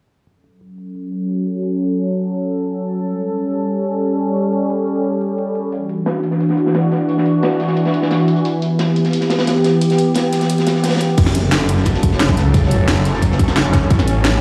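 Mechanical and aggressive, this dark technical drum and bass excerpt opens with a detuned, chorused sawtooth pad holding sustained chords over an overdriven kit of cracking snare, crash and bright hats, adds a gritty, saturated breakbeat kit at 5.7 seconds under a filter sweep, then drops at 11.2 seconds into a growling, snarling distorted saw bass and a tight, tape-warm electronic kick, all set in a bare stone room with plate reverb.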